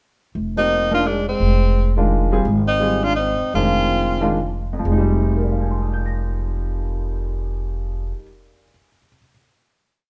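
A swung 3/4 lilt at 120-172 BPM, slowing between 2.5 and 4.8 seconds, carries this short, cool and hypnotic jazz piece in F dorian, built on a lingering Fm9 chord. Woody pizzicato upright bass plays a two-feel up front while an edgy tenor saxophone with vibrato sings motif-based phrases, shadowed in the background by a breathy, mellow trombone harmony line mostly in thirds. A concert grand piano with audible action noise and deep bass comps in syncopated quartal voicings, ringing on alone after 8.1 seconds as the band, playing live, settles into a moderate stone room.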